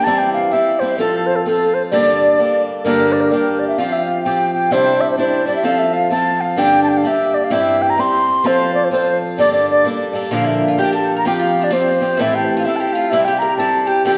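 A church-like hall gives this short cut from a longer piece a wet, lingering reverb with a decay of 1.7 seconds, so the notes bloom and hang in the air. It is a driving, wild Celtic polka in 2/4 at 128 BPM, set in G dorian with a swung eighth-note feel. Up front, a wooden baroque flute carries the melody from A4 to C6 with an airy tone, crisp attacks and vibrato. Beside it, a picked swing-style acoustic guitar supplies the accompaniment, sounding dark, woody and boxy, like a box strung with old strings. At 10.3 seconds, as the tune moves into a new section built on Bb, Fsus2, Am and C, a mandolin slips in quietly underneath with a round, double-strung second line that runs to the end at 14.2 seconds.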